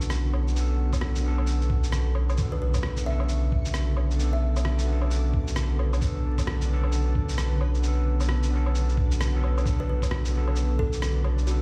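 Heard as if through a big sound system in a bare room, this nocturnal, ghostly future garage excerpt sits in a large studio reverb with a layer of vinyl crackle, its swung groove carried by a muffled, tape-softened shaker, rim click and woodblock, a pitched-down thumpy kick from 0.9 seconds, and a round, up-front dub sub bass that pumps along with a gritty, barky overdriven tine electric piano through tape echo. Beneath them a moody sawtooth pad with chorus drifts in the background on a Bm9 chord, while a very quiet reversed, granular texture swells dreamily throughout. A faint electronic impact marks the shift at 2.4 seconds, where a woody, hollow kalimba begins plucking a ringing, delayed melody that returns near the close.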